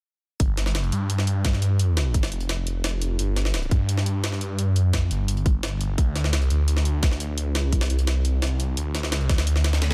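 Tense and aggressive, this dry, brief cut of dark technical drum and bass sets a swirling, thick detuned saw bass with phaser and overdrive up front alongside a tight, layered electronic kick that stops at 9.4 s, bright electronic hi-hats re-recorded in a small room, and a gritty, pitched-up jungle sampler-style kit whose high-passed hats and medium-tuned snare carry a tape-warm, compressed edge.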